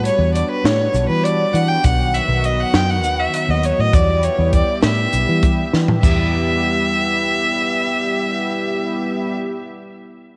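Set in an uneven 7/8 with a straight feel, this tense, brooding stretch of progressive instrumental music puts a clear, focused bowed violin with vibrato and tape echo up front over a smooth, chorused analog pad, a round, foam-muted fingered electric bass and a dry compact cocktail drum kit with dark cymbals, a high-tuned snare and a punchy kick, which plays a fill at 5.7 seconds and stops at 6.2 seconds, while a very quiet, grainy tube shaker sits beneath and a moderate echo chamber reverb surrounds the band.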